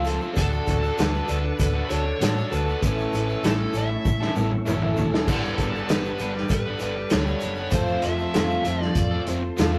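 A steady, straight 4/4 pulse at 98 BPM drives this nostalgic folk rock and heartland rock excerpt in G lydian, carried by an up-front vintage drum kit with a punchy kick, dark cymbals and a pumping small-room sound, plus a drum fill from 4.0 to 5.3 seconds, alongside a round, hollow-body fingered bass and a grainy egg shaker in the background. A double-tracked crunchy guitar riff and a boxy, ladder-braced acoustic guitar accompaniment fill out the chords moving from D through A and Gadd9 to F, while a very quiet tonewheel organ holds sustained chords with key click and slow rotary shimmer. A smooth, dark overdriven lead guitar sings the melody from 0.4 seconds, all set in a rough rehearsal-room recording with moderate reverb.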